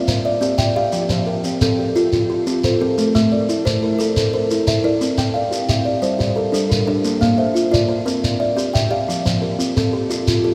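This is a short fragment of southern African traditional music, an mbira-style interlocking cycle in a straight 12/8 that feels rippling and warm. A buzzing kalimba plays ringing, woody arpeggios plucked by the thumb, its sizzle sitting up front and trailed by a diffuse ambient delay. A second kalimba, heard from 0.0 to 10.5 seconds, plays arpeggios in the same range, with short, full, close-miked notes that have a hollow-box body and their own delayed echo. A grainy, mellow shekere keeps the percussion going from 0.1 to 10.4 seconds, sounding distant in a large room. The chords move through C, F, Am, Gm and Bb and come back to C and F. An enormous reverb soaks the mix and gives it a dreamy, floating haze.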